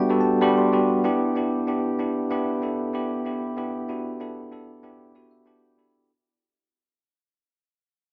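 A straight 4/4 pulse at 95 BPM carries this nostalgic, romantic pop excerpt, tuned to A4 = 438 Hz, where a bright, bell-like tine electric piano plays accompaniment from G3 to C6, moving from Gmaj7 to Em7 at 1.0 seconds. The clean, up-front keys sound as if heard through built-in speakers and are bathed in a lush hall reverb, with fills from 0.0 to 1.0 seconds and again from 4.8 seconds, while a fade-out runs from 1.0 seconds to the end at 6.1.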